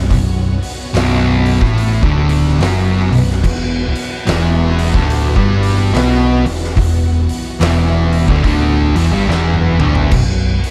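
A heavy, ominous stoner and doom metal excerpt opens with a growly overdriven picked bass, two dark fuzz guitar riffs sitting in the background and a very quiet, lush vintage string machine holding sustained chords, joined at 0.1 seconds by an oversized low-tuned drum kit with a fat snare, punchy kick and saturated, pumping room sound, all at a swung 72 BPM over Bm, before a bright, double-tracked overdriven guitar riff enters at 3.4 seconds as the harmony moves to E5 and a drum fill at 9.3 seconds leads to a B5 chord at 10.1 seconds in a dark, small-room mix.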